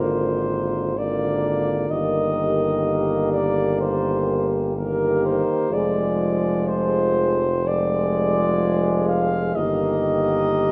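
A moderate concert hall reverb gives this brief passage, cut from a longer hymn-like classical piece for brass band, a spacious and tender glow. At a slow 62 BPM in 4/4 with a rubato feel, it sits in Eb major and moves from Bb7/Ab through Eb/G and Ddim/F before settling back on Eb/G at 9.6 seconds. A mellow, roomy flugelhorn carries the melody up front, its tone slightly distant, while a dark French horn section with light vibrato and a soft attack sings a second line in the background. A solo trombone with a smooth top and a tight, vintage-toned trombone section fill in the accompaniment beneath. A clear tuba anchors the bass up front, and all five parts play together for the full 10.7 seconds.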